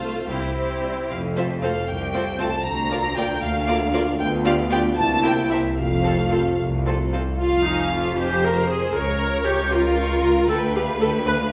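This brief passage, cut from a longer classical-period movement, is heard in a resonant recital hall or church whose reverb wraps the symphony orchestra in a lingering wash. The music is quick, graceful and lively, moving in a lilting 6/8 with a flexible, rubato feel, and it darkens from major into minor at 7.4 seconds. Two bowed violin sections carry the lines: one sings the melody high in its range with focused vibrato, while the other plays a second line beneath it, and the violas, which are the most prominent strings, fill in the accompaniment with a smooth-topped, rich tone. Cellos and a more distant double bass section share the bass, the basses adding a gentle attack and expressive vibrato. A mellow French horn section holds sustained chords with a punchy edge and light vibrato until it drops out at 7.1 seconds, leaving the strings alone for the minor-key close.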